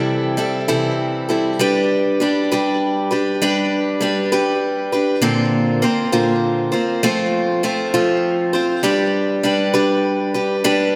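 A lone picked steel-string acoustic guitar opens this rock fragment, its bright, boxy parlour tone sitting up front with tape echo as it moves slowly through C6 and G at 66 BPM in a straight 6/8. At 5.2 seconds the harmony shifts to Bbadd9, F and G, giving the music an open-road, warm feel. A long church reverb wraps the guitar and makes the whole mix dreamy and soaked in space.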